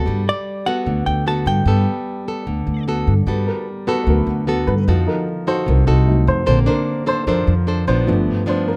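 A straight 4/4 bossa nova groove at 150 BPM in G major sets a breezy, sunny mood, with full-bodied, fingerpicked nylon-string guitar complete with finger squeak and a woody, growly pizzicato upright bass up front from the start, a dark, clean, picked hollow-body jazz guitar melody briefly appearing at 0.3 seconds, and a mellow, intimate baby grand piano taking a solo from 3.3 seconds with its action noise audible, all captured in a close, detailed, nearly dry recording cut from a longer piece.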